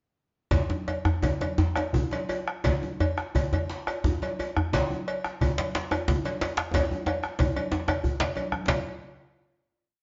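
A hard-handed lead djembe sits up front, close and dry, playing lead drum phrases over a powerful, earthy West African drum ensemble in a straight 12/8 that speeds up across this whole short piece. Beneath it, a second djembe with metal rattles and bright thin-skinned congas keep evenly spread parts going, a metallic cowbell plays a bell pattern, and a deep, dark bombo holds the background. The band plays live in a stone room with a wet reverb and a dulled top end, and a drum fill from 6.7 seconds leads into a final hit at 8.7 seconds.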